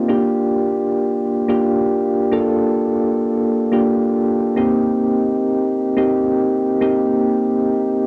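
Over a straight 4/4 pop pulse, a solo of soft, round electric-piano-like synth keys with chorus, tremolo and cassette-tape color sits up front in a small, wet room, moving from Gm7 to Cm7 at 4.6 seconds in this moody, urgent fragment cut from a longer piece.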